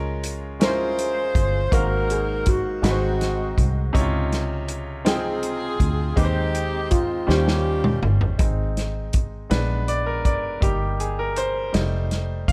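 In an unhurried 6/8 sway, this reverent, hopeful slow gospel fragment sets a tight, roomy soul drum kit and a round, foam-muted fingered electric bass beneath a bright, polished concert grand piano, while a close-miked saxophone section with soft-attacked vibrato carries the melody beside a shimmering, airy steel pan in the background, until a drum fill at 7.3 s leads into a grand piano solo from 8.4 s over the continuing bass and drums, the whole wrapped in studio reverb and a dark, warm production.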